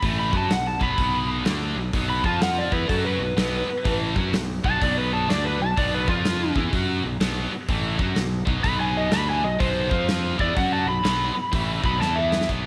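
Set in a moderate echo-chamber reverb with studio ambience, this short cut from a longer piece has a swaggering, driving blues rock power trio and southern rock feel at 125 BPM in 4/4, swung on the eighths and tuned to A4 = 441 Hz. An overdriven slide guitar, played with fingerpicks and carrying a warm tone, leads the whole way with a solo that ranges from F4 to B5 and sits slightly louder than the other parts. Beneath it, a tight, bright, double-tracked distorted guitar holds an up-front picked riff between A2 and F#4, while a growly, fuzz-laden fingered electric bass adds a punchy low line from A1 to F#2. A huge arena drum kit with an airy, polished hall sound drives the groove with a punchy kick, a medium-tuned snare and hi-hat. The harmony moves between B5 and F5 chords before shifting to E5 at 12.0 seconds, where the drums play a fill that closes out the section at 12.5 seconds.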